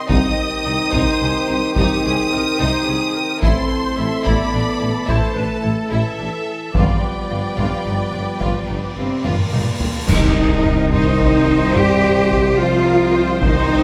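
A distant taiko ensemble struck with heavy sticks drives this dark, heroic cinematic excerpt at 72 BPM in 12/8, where a clear, focused studio violin section carries the melody over lush symphonic violins and violas, a rich, close cello section, a background double bass section and mellow tuba on the bass, and sustained chords from mellow French horns and a tight trombone section, all in moderate hall reverb. Dark clash cymbals and concert bass drum enter at 6.7 s, and a huge, bright cymbal swell builds from 9.0 s into an impact at 10.1 s as the music settles into C minor.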